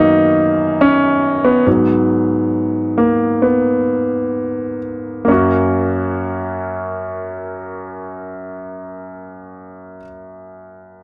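In a straight 4/4 at 63-72 BPM, this tender, heartfelt pop excerpt in F# major (tuned to A4 = 442 Hz) slows down over its opening 5.3 seconds as a clear grand piano plays accompaniment from F#2 to F#4, moving from F#6 to G#m7 before settling on F# at 5.3 seconds. The piano sounds natural and up front, playing solo for the first 5.3 seconds and carrying through the whole 11 seconds. The dry, close 1970s-style studio sound adds only light reverb.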